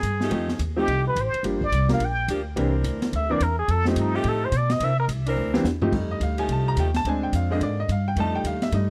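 A fast swung 4/4 at 214 BPM drives this energetic, brassy big band swing excerpt in F mixolydian, where a woody pizzicato upright bass and an open drum kit with dark cymbals, a high-tuned snare and a boomy kick support a plunger-muted trumpet solo full of wah-wah and scooped notes with tape echo, until a drum fill leads to 5.9 seconds, when a bright, slightly detuned upright piano with audible action noise takes the solo over soft-attack sustained chords from a clear saxophone section, all in a dry, close 1970s-style studio sound.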